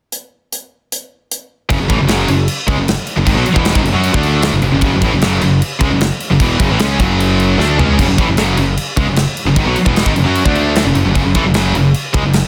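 A dense, heavily limited modern master with light reverb frames this relentless, aggressive heavy metal excerpt in F# minor at 153 BPM, cut from a longer piece. An up-front acoustic kit with a tight kick, medium-tuned snare, hi-hat, crash and toms in a small room opens alone before two distorted, high-gain electric guitars, one of them scooped, and a growly, bright picked bass enter together at 1.7 seconds, driving riffs over F#5, D5 and F#m. A drum fill at 7.6 seconds punctuates the assault.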